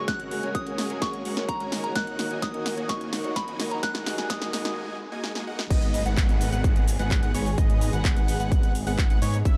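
Emotional, euphoric festival progressive house excerpt in which a soft, warbling FM bell melody and a mellow background piano float over dark, woody strings, a huge filtered supersaw riff and very quiet risers through a drum-filled build-up, then a break and swell at 4.8 seconds lead into a drop at 5.7 seconds where a thick detuned saw bass and a wave-folded, ring-modulated unison lead arpeggio join the punchy, up-front kick, metallic hats and claps, all in a dark, dry, pumping mix.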